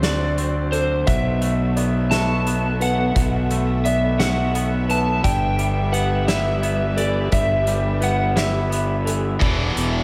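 In a slow, straight 6/8 lilt, this brooding, cinematic post-rock fragment sets a slide guitar with lush chorus and delay singing the melody over distant bowed strings with vibrato and portamento, a boxy felt-muted piano and a twangy clean guitar both arpeggiating through delay, a round fuzz bass up front, and a roomy indie drum kit with dark cymbals, all soaked in hall reverb until a tight, bright distorted guitar riff bursts in at 9.4 seconds as the chords move from D7 through B7sus4 and G6 to Em7.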